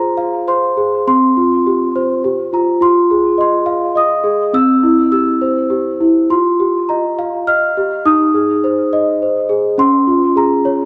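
Gentle, wistful children's music in F minor at a rubato 103 BPM in 3/4, this short passage cut from a longer piece features a solo celesta, bell-like and delicate with soft felt hammers, placed up front in a dark production and bathed in a wet recital-hall reverb as it moves from Fm through Csus4, Ebadd9 and Ab/Eb to a closing Db.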